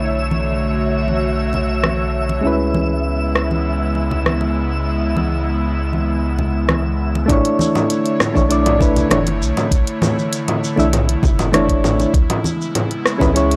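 Soft, warbling electric-piano-like synth keys with chorus and delay accompany this relaxed, blissful sunset chillout cut at 99 BPM, moving between Bm11 and C#m7 over an airy, breathy pad and a deep, round sub bass, while ringing congas sit in the background, a layered deep house kit with hi-hat, rim click and shaker enters up front at 1.8 seconds under a filter sweep, and a twinkling granular shimmer drops out at 7.3 seconds just as a knocking electronic kick arrives, all captured in a dry, gritty hardware recording with light reverb.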